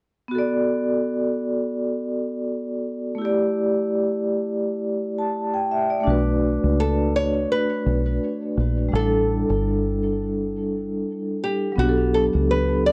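A lazily swung 84 BPM hip hop pulse in 4/4 carries this hazy, reflective B minor excerpt from a longer piece, which rocks between Bm7 and A7sus4. A ringing, metallic vibraphone with medium hard mallets and a motor vibrato opens the passage on its own, dark and smooth through a cassette tape tone, until a round, foam-muted dub bass enters at 6.1 seconds. A small fingerpicked nylon-string guitar takes the melody at 6.8 seconds through tape echo, all of it set in a damp little room and a worn, warbling old tape sound with drifting pitch.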